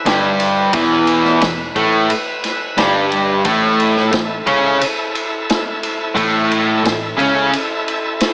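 Swaggering and driving, this short blues rock and southern rock excerpt at 89 BPM in 4/4 is led by an up-front, double-tracked cranked stack guitar riffing with bright, picked overdrive over E5 and A5 power chords, while a punchy, natural vintage drum kit plays kick, snare and ride, a round, foam-muted bass sits dark in the background, and a shouting tonewheel organ with key click and slow rotary speaker holds sustained chords until 8.3 seconds, all wrapped in a moderate plate reverb and a small-speaker sound.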